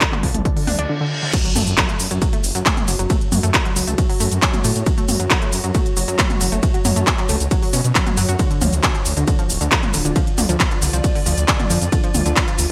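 A heavy, layered electronic kick sits up front in this dark, hypnotic slice of driving peak-time techno, carrying a tape-warm tint from being re-recorded in a small room. Beside it, a techno kit of smooth hats, handclaps, shaker, ride, crash and toms shares that close, up-front placement, its hats, toms, cymbals and percussion pumping against the sidechain and its tail shaped by gated reverb. A thick, menacing detuned saw bass with a beating, sustained low end also pumps, while a lush, punchy unison pluck riff carries tube saturation, 12-bit sampler grit and digital delay. Far behind, a cloudy granular pad blurs and evolves with chorus and its own reverb. A reverse cymbal rises from 0.7 seconds into the drop at 1.3 seconds, where a background impact rings until 3.1 seconds, and the whole passage has a bright 1980s-style digital sheen.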